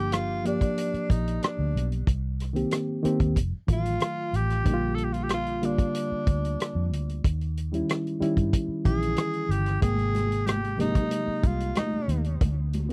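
Lush 1970s-style soul at 93 BPM in a straight 4/4, smooth and bittersweet, with a raspy tenor saxophone carrying the melody through a touch of tape echo, its gritty tone showing light vibrato and scooped notes over a reedy, slightly out-of-tune electric piano playing chords that move from Gm7 through F7b9 and Eb7b9 to Abmaj9. Underneath, a dark, round, foam-muted fingered electric bass and a tight, mid-forward soul drum kit of hi-hat, kick and rim click sit up front, while bright, high-tuned congas enter in the distance at 9.8 seconds. The sound is dry and close, a studio recording in a 1970s style cut from a longer piece.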